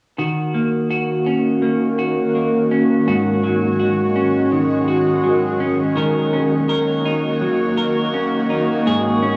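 A clean, picked electric guitar plays arpeggios drenched in lush chorus, tape echo and plate reverb from 0.2 seconds, joined at 0.8 seconds by a shimmering, warbling, detuned ambient pad holding sustained Ebm7 and Ab7sus4 chords with an octave-up glow, in this ethereal, haunting dream pop fragment at 83 BPM in Eb minor, cut from a longer piece and captured on cassette in a small room.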